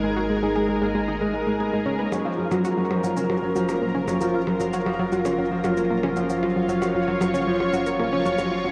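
A straight 4/4 pulse at 115 BPM carries this hypnotic, cosmic stretch of sequencer-driven space music, cut from a longer piece. A lush, up-front string machine holds bright sawtooth chords with ensemble chorus over a deep sine sub bass, while a ringing, fingerpicked Celtic harp spins arpeggios through delay and a round analog pluck with a sub octave and filter pluck repeats its riff through chorus and delay. At 2.1 s the harmony moves from G#madd9 to F#maj7 as electronic percussion blips and a shaker, re-recorded in a small room, enter with their own delay, all of it bathed in a huge ambient reverb and worn cassette tape with warbly pitch drift.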